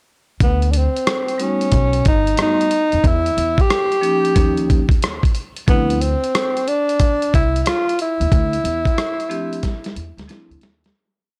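Nocturnal and cool, this short jazz-hop piece moves at 91 BPM in 4/4 with a 65% sixteenth-note swing, set in D dorian and tuned slightly flat at A4 = 439 Hz. A dusty, sampler-style drum kit sits up front from 0.4 seconds, its compressed, gritty sound pairing a thumpy kick and medium-tuned snare with rim clicks and sixteenth-note hi-hats in a laid-back beat, re-recorded in a large room. A plucked upright bass with a woody, dark tone carries a syncopated line dotted with chromatic approach notes, while a breathy tenor saxophone leads up front with a mellow, subtoned jazz solo built from song-like motifs, colored by light vibrato and scooped notes. From 1.4 seconds a vibraphone struck with hard mallets, motor off, adds bright, metallic, ringing comping in rootless voicings. The harmony moves through D5, B7b13, Edim and Eb9 before landing on Dm9, and the whole piece carries a dry, gritty cassette character as it fades out from 8.3 seconds, with a drum fill from 9.6 seconds closing it at 11.0 seconds.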